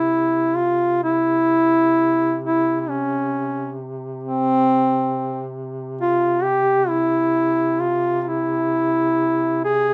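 Rubato and mournful at around 65 BPM in 4/4, this Caucasian folk lament in C major, cut from a longer piece, sets a clear, up-front duduk singing a longing, scooped folk melody between C4 and Ab4 over a distant, warm second duduk holding a roomy C3 drone with vibrato and scooped notes, both sounding throughout the 9.9 seconds in a rough home-demo mix with moderate studio reverb.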